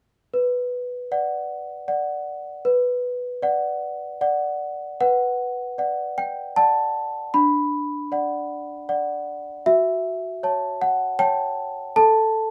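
Classical lullaby for solo celesta in B minor, moving at 78 BPM in a straight 3/4 with an eerie, fragile mood. The bell-like, sweet tone of the hard felt hammers sits up front in light reverb, ranging from D4 to B5 over harmony that shifts from B minor to B minor over D and then F-sharp minor. A new section begins at 5.0 seconds, and this short cut from a longer piece ends at 12.5 seconds.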